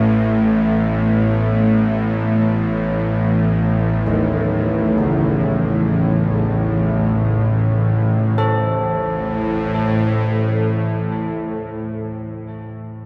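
This ominous, unsettling dark ambient drone opens on a deep, moody pad holding an Asus2 chord, alongside a string-like bowed drone sitting low beneath it. The drone is up front, tense and bright, with vibrato and a ring-modulated edge. The pad drifts under chorus and a moving notch, its detuned layers resting on a sub octave. At 4.1 seconds old church bells enter in the background, playing arpeggios with a bronze, clangorous tone and beating overtones, trailed by tape echo. The harmony settles onto an A5 at 8.4 seconds, and a cathedral reverb soaks the mix in a dreamy haze in this passage cut from a longer work.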